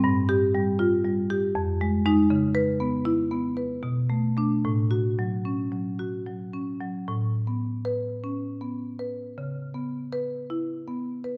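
A woody solo marimba, played with medium mallets on rosewood bars and sitting up front in a moderate recital-hall reverb, carries this playful, flowing passage of contemporary classical music in a rubato three-four, drifting through seventh and added-tone chords before shifting into a new section at 7.1 seconds, in a fragment cut from a longer piece.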